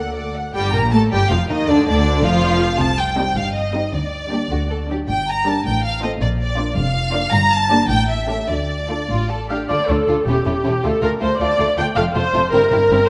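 Set in a rubato 6/8, this dramatic, restless fragment of a quick classical-period movement for string orchestra carries a focused, up-front violin melody over an expressive, soft-attacked second violin line and rich, lush viola accompaniment, while smooth double basses hold the bass, even-toned cellos join them from 0.6 s in the background, and a moderate scoring-stage reverb frames the dark production.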